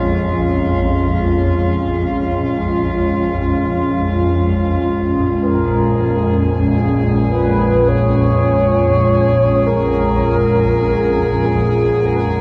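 Dark ambient drone in free time, this desolate, cavernous passage is cut from a longer piece and sits inside a drenched cathedral reverb that lingers for seconds. From the start, a swarming, nasal drone churns low beneath everything, detuned and granular, while a sweeping resonant pad holds sustained Bb minor chords up front with a vintage, warbling sawtooth character and subtle chorus. High above, a faint metallic drone adds an eerie, inharmonic ring-modulated shimmer. At 5.4 seconds a mellow horn-like synth lead enters with a round, soft-attacked melody, its vibrato wrapped in lush chorus and a diffuse ambient delay. The layers stay sustained and slowly evolving, leaving a tense, hollow atmosphere through to the end at 12.4 seconds.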